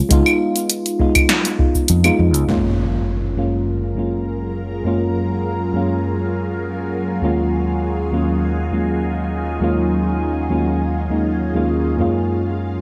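Sunset chillout with a relaxed, sunny mood, built on a round, mellow FM electric piano steeped in chorus, cassette-tape character and delay, joined briefly by a fingered electric bass, a deep analog kick and a punchy, filtered deep house kit of snare, hi-hat, cabasa and claves with gated reverb until about 2.5 seconds, when an electronic impact sounds and an ethereal, detuned airy pad with phaser and ensemble chorus rises in at 3.7 seconds over lush major and minor ninth and eleventh chords, all set in a bright 1980s-style digital sound with a plate reverb.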